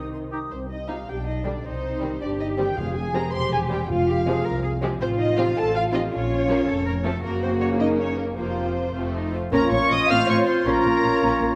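In a straight, quick 6/8 at 106 BPM, this dramatic, urgent classical-period orchestral excerpt in C minor, turning to Bb minor at 5.0 s, sets a veiled, con sordino violin melody over muted second violins, violas, cellos and double basses, with mellow, distant French horns sustaining chords, soft-malleted timpani sounding on F2 from 2.8 to 4.4 s, and a flute section, oboe and clarinet adding a second line briefly at the opening and again from 9.5 s, all bathed in a wet concert-hall reverb.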